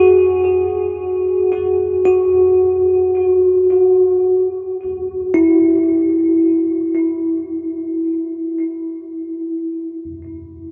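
Ambient piece in free time, serene and peaceful, where a bell-like tine electric piano plays bright, clean arpeggios up front, drenched in lush chorus and tape echo, opening on an F#sus2 before the harmony gives way to an unharmonized passage at 2.1 seconds, all suspended in a vast, echoing space with a huge reverb tail in this short fragment of a longer work.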